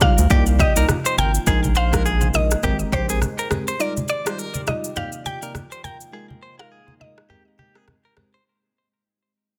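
Joyful and breezy, this afrobeats excerpt at 103 BPM with a swung sixteenth feel sets a woody, mallet-like synth pluck melody over sparkling bell-like FM electric piano, a faint dark ambient pad, a twangy clean electric guitar riff, low-tuned hand-played congas, an up-front electronic afro-pop kit with deep kick, rim click, shaker and a softly clipped snare, and a round analog bass that drops out at 3.3 seconds, all moving through Cm11, Bb7sus4, Abmaj9 and Ebmaj9 chords in a dense, heavily limited mix that fades throughout.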